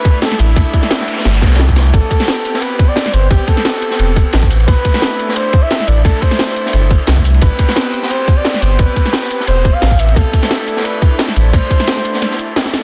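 Lush and warm, this excerpt of liquid drum and bass moves at 175 BPM in C major with a light swing on the sixteenths, its chords easing between C6 and Am9. A smooth-topped flugelhorn carries the solo melody with a pop touch, trailed by delay, while a thick, detuned unison pad of sawtooth and square waves holds sustained chords in the background, its chorus shimmer pumping against the kick. Up front, an overdriven electronic kick sits tight beside a layered drum and bass kit with a cracking snare, bright hats and shaker, while a second, acoustic breakbeat kit adds a gritty, saturated layer with dark cymbals, a high-tuned snare and a rolled-off top. A deep sub bass with an octave, built from sine and triangle tones with a fast attack, enters at 0.4 seconds and anchors the low end. A background noise sweep passes early on, and near the close the kick drops out at 12.2 seconds just before a drum fill at 12.6 seconds, all within a small room ambience and a dense, heavily limited modern master.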